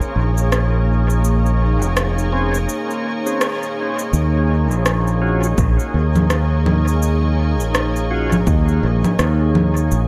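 Ambient dub at 83 BPM in 4/4, with a swung sixteenth-note feel and a deep, meditative mood, this excerpt is cut from a longer piece and tuned slightly below standard pitch. A soft, organ-like pad sustains chords throughout, moving from Bbm9 to Ebm11; its pure, detuned tone has a slow attack, long release, ensemble chorus and built-in reverb. Beneath it, a faint, breathy wind-like texture drifts until 4.1 seconds, while overdriven electronic shaker, rim click and congas, re-recorded in a small room, are treated with dub echo. A bright, growly fingered electric bass sits up front and punchy, and a clean tonewheel organ enters at 2.3 seconds with background stabs colored by key click, slow rotary speaker, 12-bit sampler grit, a low-pass filter and dub echo. A short break and band accent interrupt the groove before the second chord, and a layered, overdriven electronic kick joins at 5.6 seconds, all set in light reverb.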